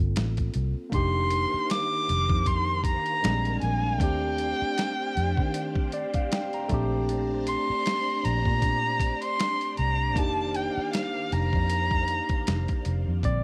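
Set in a digital ambience, this smooth, soulful neo-soul and R&B passage moves at 78 BPM in 4/4 with a light sixteenth-note swing. It rests on a gritty, pitched-down boom bap sampler-style kit with a thumpy kick and high-tuned snare, a round, foam-muted fingered electric bass up front, and a barky, bright tine electric piano through a combo amp that plays a fill from 5.5 to 7.1 seconds. From 0.9 seconds a single bowed erhu carries the expressive melody up front with vibrato, portamento and slapback echo, while a phased string machine sits low in the mix with swirling, warbling sustained chords through Gm9, F7sus4, Bb7, Ebmaj13 and Bbmaj9.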